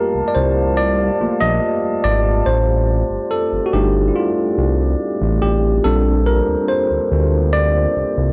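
A dry, gritty recording with light reverb and a small-room ambience frames this moody, late-night R&B fragment in a straight 4/4 feel, cut from a longer piece. Up front, a worn, slightly out-of-tune tine electric piano, lightly overdriven as if through built-in speakers, carries a solo across the whole clip over the chords Gm9, F13 at 2.5 seconds and Bb69 at 5.8 seconds. Beneath it, a smooth, saturated synth bass with a fast attack and ring-modulated sawtooth, square and triangle tones holds the low end, while a glassy, ethereal glass harmonica adds softer sustained chords with slow attacks and gentle beating, its sound boxy and pure.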